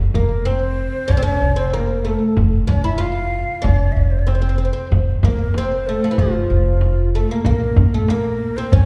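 A thumpy pizzicato upright bass opens this festive, passionate Persian modal ensemble piece in F dastgah chahargah at 94 BPM in a straight 4/4. A woody, double-strung fretless oud carries the melody up front with a slapback echo, while a deep frame drum sits in the background and a breathy, close-miked ney traces a soft-edged second line with vibrato, all set back in a reverberant recital hall. At 7.5 seconds a very quiet, dry tombak joins as the music moves into a new section, just before this fragment of a longer piece breaks off.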